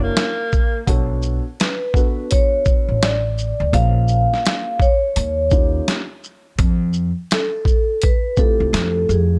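A small room's ambience wraps this short slice of jazz-hop, which moves with a swung sixteenth-note feel and a smooth, cool mood. A breathy, whispered tenor saxophone phrase with subtone and scooped notes sits up front for the opening moments before falling away at 0.8 seconds. Beneath it, a compressed, pitched-down, gritty boom bap sampler kit brings a thumpy kick, a medium-tuned snare, hi-hat and shaker. A woody pizzicato upright bass on gut strings sits up front alongside the kit, while a dark, boxy concert grand piano fills in the chords from behind. From 1.6 seconds a vibraphone played with soft mallets carries the melody, its metallic, ringing tone shimmering with a slow motor vibrato over jazzy seventh and ninth chords.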